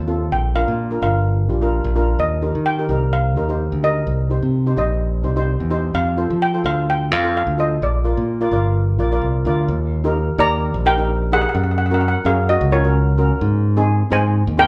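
A live-in-one-room studio sound with moderate large-room reverb places a band up front in this sunny, festive calypso excerpt at 128 BPM in 4/4, with a light swing on the sixteenths in Eb major. A metallic, mid-forward lead steel pan struck with hard rubber sticks carries the melody. A shimmering, airy double-seconds pan played with medium rubber sticks supplies accompaniment from 0.1 s, and a punchy, direct fingered electric bass holds the low end. The chords move from Bb through Ebadd9, Cm and F, then a new section at 9.7 s shifts through Eb, Gb and Ab.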